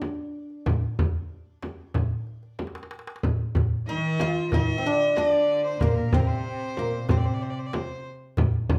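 A plectrum-plucked, fretless oud sits up front with a woody, double-string voice, carrying the melody of this melancholic, hypnotic Arabic maqam piece in D bayati, cut from a longer performance. It moves at 93 BPM in a straight 4/4, over a metal-shell darbuka played crisply with hard hands and a large, deep frame drum struck with soft hands, both close to the ear. A drum fill at 2.6 seconds leads into a new section. At 3.9 seconds a bowed cello section with a reedy, gut-string, period-style tone and a single biting, earthy violin with light vibrato join on second lines, both set at a distance behind the oud. The ensemble plays live in one room, wrapped in a moderate large-studio reverb.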